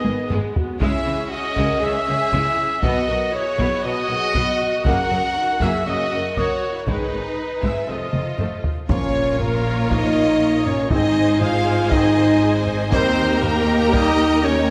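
Dark, distant French horns hold sustained chords at the front of this heroic, epic orchestral film-score excerpt, joined by dark trumpet stabs, a very quiet, clear trombone section, close and dry taiko drums with fills, a rich, focused violin melody over a smooth second violin line, bright violas, and cello and double bass in the background, until at 8.9 s a new section opens where a hollow flute, warm studio strings and a huge impact enter, the orchestra sitting in a wet scoring-stage reverb.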